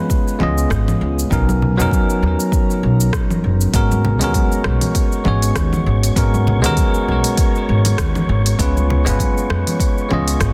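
Sunset chillout at 99 BPM in G# dorian, smooth and warm with a swung sixteenth feel, built on a bright, bell-like tine electric piano accompaniment up front with delay and shimmer reverb over chords moving from C#7 through Bmaj9 and G#m11, supported by a deep overdriven electronic kick, a tape-warm R&B kit of smooth hi-hats, rim click, shaker and congas with soft clipping on the snare, woody pizzicato upright bass from 0.4 seconds, very quiet hard-handed acoustic congas entering at 1.5 seconds, and a dark, breathy wind-like noise texture with shimmer reverb arriving at 4.4 seconds, set in a dense, heavily limited modern master cut from a longer piece.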